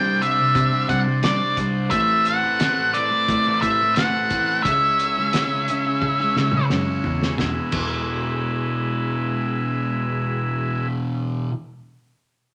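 A straight 4/4 groove at 88 BPM carries this trippy, kaleidoscopic psychedelic rock excerpt in E mixolydian, moving through Csus2, Amadd9 and C#m before landing on E at 7.4 seconds. An up-front, picked octave-fuzz lead guitar sings the melody until 6.7 seconds over a double-tracked, phased fuzz guitar riff, while a buzzy vintage combo organ holds clean chords bathed in spring reverb and a round, foam-muted fingered bass sits in the background. A cloth-damped, lo-fi drum kit with a fat snare, tight kick and dark cymbals thuds underneath, rolling into a fill at 6.0 seconds, all set in a wet studio reverb.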